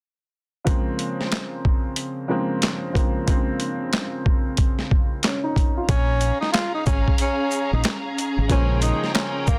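Dry, dense and heavily limited, this dark, reflective boom-bap hip-hop excerpt moves at 92 BPM in Bb dorian with a swung 16th feel. A worn, woody, slightly detuned upright piano opens on Bbm7 over a gritty, pitched-down sampler-style drum kit of thumpy kick, high-tuned snare, hi-hat, handclaps and shaker. At 5.9 seconds a breathy, whispered tenor saxophone takes the solo melody with vibrato and a soft attack, joined by a lush, distant bowed string section holding sustained chords, a round, punchy, foam-muted fingered electric bass, and, from 6.5 seconds, very quiet, close finger snaps.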